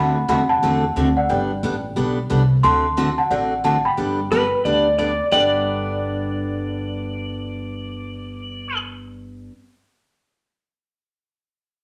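Cheerful and playful, this short country and western swing excerpt in G major bounces along at 179 BPM with a swung eighth-note feel, moving between D7 and Gadd9. A worn, slightly out-of-tune celesta carries the melody with a bell-like, sweet tone from soft felt hammers, over a bright, full-bodied picked dreadnought acoustic guitar up front and a woody, thumpy pizzicato upright bass on gut strings. At 4.3 seconds a twangy, clean pedal steel guitar, played with fingerpicks and slide and using volume swells, enters with a second line until 8.8 seconds, all set in a wet studio reverb.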